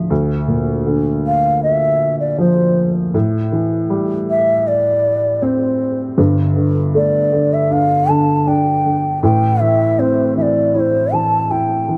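An airy bass bansuri carries the melody from 1.3 seconds, its bamboo tone soft in attack and gently shaded with vibrato, sitting up front over a dark, woody upright piano that plays the accompaniment from the start. This emotional, longing pop excerpt moves at a straight 79 BPM in 4/4, with the harmony passing through Bb/D and Am7 before the second section arrives at 6.2 seconds on Gsus2 and Am. Light reverb gives the up-front sound a touch of space.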